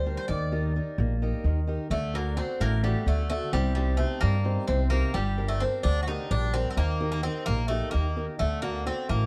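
The bright, metallic Greek bouzouki sits up front with the melody, its picked double strings and some octave-doubled courses ringing between G3 and D5. This tense, driving Greek folk piece for bouzouki band moves in 7/8 at 259 eighth-note beats per minute with a straight feel, in D phrygian dominant. Beneath it, a boxy fingerpicked acoustic guitar plays swing-style accompaniment. A woody pizzicato upright bass with steel strings is also placed up front, holding down the low end from G1 to G2. All three play throughout this short cut from a longer piece, with a brief opening passage on Eb giving way at 1.9 seconds to a longer stretch moving through D, Cm, Gm, Eb and back to D. Light reverb and a dark, warm production shade the whole band.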